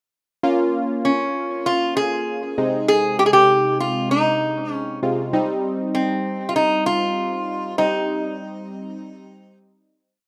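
This rough home-demo pop piece sits in a wet studio reverb, with a driving, cool mood at 98 BPM in a straight 4/4, moving through Bbm, Ab/C and Cm over a single verse. Warm analog keys with a round, detuned sawtooth tone and a filter sweep hold triad chords up front, colored by chorus and phaser. From 1.0 seconds a bright, metallic, nasal resonator slide guitar, played with fingerpicks and treated with analog delay, carries short call-phrase motifs before the track fades out from 7.8 seconds.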